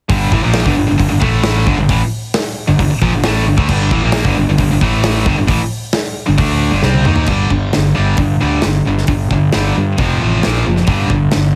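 Hard rock at 134 BPM in G minor, this aggressive, driving excerpt pairs a bright, tight distorted guitar up front with a sludgy overdriven guitar in the background, both picking riffs over a growly, punchy fuzz bass. A big acoustic drum kit with bright cymbals, a medium-tuned snare and a boomy kick sits up front, and a drum fill at 6.8 seconds leads into a new section at 7.3 seconds built on power chords. The sound is heavily compressed, like radio, with light reverb.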